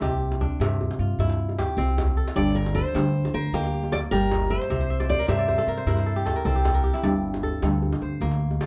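West African traditional string music, this short excerpt cut from a longer piece has a hypnotic, reflective mood in a straight 12/8 metre. Up front, a bright, ringing kora spins fingerpicked arpeggios throughout, adding a fill between 4.7 and 7.0 seconds. Beneath it, a woody, thumpy upright bass with gut strings plays pizzicato, while a tight, cracking djembe struck with hard hands keeps the percussion, its sound vintage and band-limited. A picked steel-string acoustic guitar carries a brief melody from 2.4 to 5.7 seconds over harmony that moves between C and G minor. Light reverb and a dark, warm production round out the recording.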